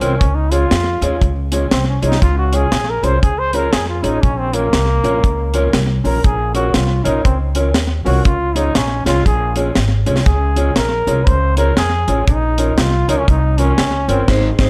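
Set in a small room with light reverb, this cheerful, bouncy ska excerpt in Db major swings at 119 BPM as a clear, vintage-toned trombone takes a pop-style solo with vibrato and slapback echo, over a mellow, clean electric guitar, a woody pizzicato upright bass and a dry reggae drum kit with a high-tuned snare and tight kick, before a band accent at 14.3 seconds.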